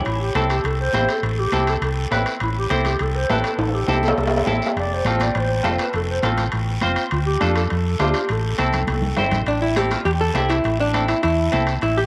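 A brisk, straight cumbia groove in 4/4 drives this fiery, passionate passage cut from a longer Latin piece, carried by a raspy, close guiro, ringing metal-shell timbales with a vintage, band-limited tone, and high-tuned congas played with soft hands in the background. A round, punchy short-scale bass sits up front with a dark, amped hollow-body sound, while a bright, clean semi-hollow electric guitar plays the accompaniment. Over this, a breathy clarinet takes a jazz-style solo from the opening until 9.5 seconds, its subtone, vibrato and scooped notes sounding distant and whispered yet intimate. Drum fills break in twice during the solo as the chords move from Am through F and Dm back to Am. At 9.5 seconds a miked and amplified archtop guitar takes over the melody up front with a picked electric voice, and a wet spring reverb colours the mix.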